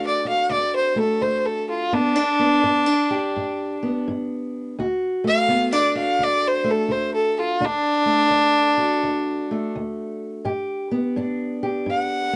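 Close, detailed microphones catch this short passage in a booth with a moderate touch of room ambience, giving it an intimate feel. It is a laid-back, soulful acoustic country blues for fiddle and guitar in D mixolydian, moving at an easy 84 BPM in 4/4 with a lilting swing on the eighth notes. A single bowed fiddle carries the melody as a solo for the full 12.4 seconds, its tone dark, nasal and woody, with a light vibrato, sitting up front. Beneath it, a fingerpicked steel-string parlour guitar provides accompaniment throughout, boxy and also close in the mix but set lower than the fiddle. The harmony shifts between D and G, landing on G at 1.9 seconds and again at 10.5 seconds before the passage is cut off.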